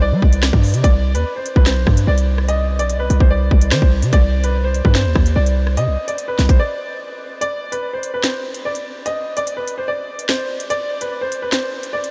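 A punchy, heavy 808-style bass sits up front in this tense, ominous drill excerpt. It hits hard with a fast attack and a decaying sine tone edged by a noise layer, and drops out at 6.6 seconds. The track moves at 146 BPM in 4/4 with a half-time feel in C harmonic minor, resting on a Csus2 chord. A clear, woody upright piano carries the melody throughout, filtered to a darker tone and trailed by delay, at a lower level than the beat. The electronic drill kit enters at 0.2 seconds, also up front, with a hard-clipped kick, sharp snare, crisp hi-hats, rim clicks and finger snaps. After a break, the second section from 7.4 seconds strips away the chord, leaving piano and drums in light reverb until the cut.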